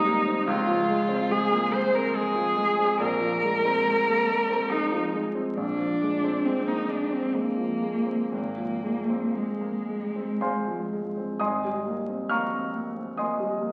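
The music moves in a gently swaying three-beat metre, played with a free, breathing rubato that lets each phrase stretch and settle. It is an impressionist classical duo for cello and baby grand piano, and its mood is pastoral and dreamy. The solo cello carries the melody close and up front, its bowed line warm and expressive, with a soft attack, vibrato and a sliding portamento between notes. Beneath it the piano provides accompaniment of natural tone and short sustain, moving through soft, colourful harmonies such as Dbmaj7 and Bbsus2 before coming to rest on Abmaj9. The cello falls silent at 10.9 seconds, and the piano carries on alone into a brief new section from 11.4 seconds until the passage is cut off at 13.7 seconds, as it is taken from a longer piece. A lush scoring-stage reverb surrounds the duo, and the crackle of a very old 78 rpm record gives the whole sound a faded, antique patina.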